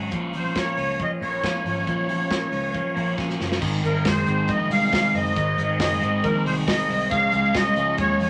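Youthful and bright, this jangly indie pop excerpt at 138 BPM in 4/4 sets a reedy, shimmering musette accordion melody up front over twangy, compressed twelve-string electric guitar arpeggios, a dark overdriven guitar with phaser, a round, foam-muted picked electric bass and a polished, airy acoustic drum kit with a tight kick, moving from Bbm to Ab after a drum fill at 3.2 seconds and on to Db at 7.1 seconds, all in a wet studio reverb.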